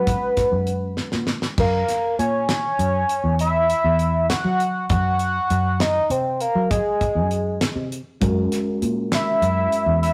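A straight 11/8 pulse at 199 BPM counted in eighths drives this bright, intricate progressive band instrumental in F# mixolydian, where a hollow, bold sawtooth-and-triangle lead with an added fifth layer, chorus and vibrato carries the melody up front throughout, a round, foam-muted fingered electric bass holds the low end, a damped 70s drum kit with a fat snare and tight kick plays from 0.1 s and fires off a fill at 1.0 s, and a worn, slightly out-of-tune tine electric piano, lightly overdriven through its built-in speakers, colours only the opening and returns at 8.2 s, all over chords moving from F#sus4 through F#7 and G#7/F# to F#9, captured as a rough rehearsal-room recording with moderate stone room reverb and warm saturation.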